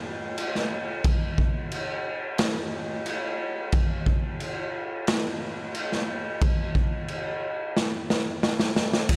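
A raw garage drum kit comes in at 0.4 seconds and carries this short rock excerpt alone, in a straight 4/4 feel with a dreamy, brooding mood. The kit sits up front in a small, pumping room, its sound saturated and gritty with a rolled-off top. A punchy kick and a medium-tuned snare drive the pattern, joined by dark crash cymbals. A light reverb lends the recording a touch of space. A drum fill starts at 7.8 seconds and runs almost to the end, and the kit stops at 9.2 seconds.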